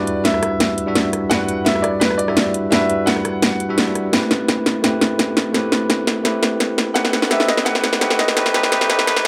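A clear, open grand piano with long sustain and delay carries a melancholic, dreamy melody over a bright, bell-like tine electric piano with dub echo, moving through Em9, Am9 and B7b9b13 in this short cut from a longer liquid drum and bass piece at 170 BPM in E minor. An up-front, layered electronic kit with a cracking snare, metallic hats, rim clicks and a tape-tinged small-room character drives a build-up, drum fill and filter sweep, while the grand piano drops out between 3.9 and 6.9 seconds. A barely audible electronic swell arrives at 9.1 seconds, all under light reverb and a high-pass filter.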